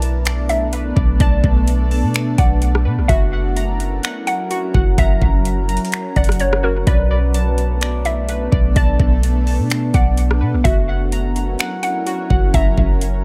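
Heavy with echo yet carrying little reverb, this hazy, ethereal cloud-rap excerpt moves at 127 BPM in a half-time 4/4 feel over Bm7 and F#7, with a shimmering granular pad sustaining chords under sidechain pumping, glassy digital keys spinning arpeggios through tape echo, a deep, boomy 808-style bass and a trap kit of knocking kick, metallic hats, finger snaps and rim clicks sitting up front, and a hollow, detuned square pluck carrying the melody from 0.5 s.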